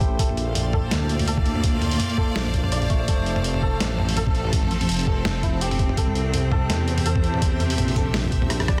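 Spacious and dark, this half-time drum and bass passage runs at 166 BPM in 4/4 with a light swing on the sixteenths, moving through Bb, F and C. A clear, lush symphonic string section holds sustained bowed chords with vibrato and a sidechain pumping effect, while a mellow hammered santur plays shimmering, ringing arpeggios through a digital delay. Underneath, a deep, up-front wobble bass blends sawtooth and sine tones with chorus and tube saturation, sounding detuned and compressed. The pitched-down, sampler-style boom bap kit brings a gritty, overdriven edge with hi-hat, rim click, toms and a high-tuned snare, joined by a thumpy electronic kick that is the loudest part of the mix. A reversed, dreamy granular texture sits in the background from 0.1 seconds, bright and bathed in its own reverb, and a drum fill arrives at 8.5 seconds in this dense, heavily limited cut from a longer piece.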